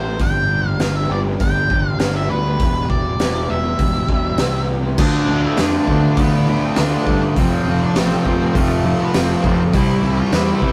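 Quiet-loud alternative rock in a brooding, cathartic mood, this rough rehearsal-room fragment of a longer piece sets a dark octave-fuzz lead guitar melody over very quiet, slightly broken-up arpeggios from an electric guitar through a small old amp, a growly fuzz fingered electric bass and a gritty, up-front raw garage drum kit in a bright stone room that comes in at 0.2 s, until at 5.0 s an up-front crunchy overdriven guitar riff and a bright, compressed fuzz guitar riff in the background join the sound under light reverb.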